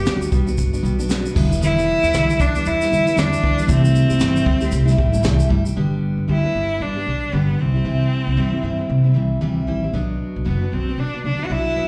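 A clear, smooth cello leads this sunny, carefree acoustic pop piece, carrying the melody with even, bowed vibrato over a dark, full-bodied picked steel-string guitar and a woody, thumpy pizzicato upright bass. The swung feel gives the groove an easy lilt as the chords move from Gmaj7 through Em7 and C6, then on to G, C and Bm. A jazz brush kit joins at 0.1 seconds with punchy kick, high-tuned snare, shaker and dark crash cymbals, then drops out at 5.8 seconds, leaving the cello, guitar and bass to carry the second half. The cello sits up front with plate reverb and a slapback echo, while the jumbo guitar, also up front with plate reverb, lets a little finger squeak through. It sounds like a live gig heard through the venue's PA, with a light club reverb around the band, and this short passage is cut from a longer piece.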